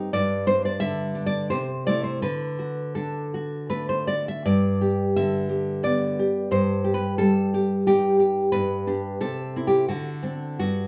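A fingerpicked nylon-string guitar sits up front in this short romantic excerpt for solo classical guitar, its fresh strings and warm tone suiting a tender mood. The piece moves in 3/4 at a gently flexible pace between 78 and 91 BPM, played with rubato, and stays in G major. The guitar covers a range from G2 to E5 across the full 10.9 seconds, moving from G through Am/C and D, then back to G before a colored Am7b5/G and a return home. It closes on Am/C and D7, leaving the phrase open as it is cut from a longer piece. Light reverb from a small room frames the playing.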